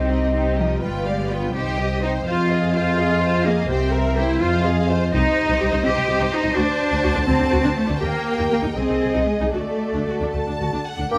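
Classical and stormy, this restless fast romantic orchestral excerpt in C minor moves at 83 BPM in a rubato 6/8, with a lush, focused violin section carrying the melody over a woody second violin line, intense background violas, mellow sustained French horn chords, clear cellos and a smooth, up-front double bass section, all in light reverb, before an airy flute ensemble, close-miked oboe, dark distant clarinet and up-front bassoon join at 11.1 s.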